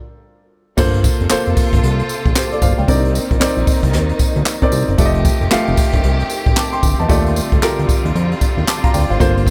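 Studio ambience frames this punchy, slick new jack swing excerpt in G minor at 114 BPM with a swung 16th-note feel, where after 0.8 s of silence a small-room brush kit with a boomy kick, high-tuned snare, dark cymbals, hi-hat, crash, handclaps and tambourine sits up front alongside a fat, saturated analog bass with a filter sweep, a natural, short-sustain baby grand piano playing accompaniment and a smooth-topped bowed string section holding vibrato chords through Gm11, Cm9, F9 and Ebmaj9#11.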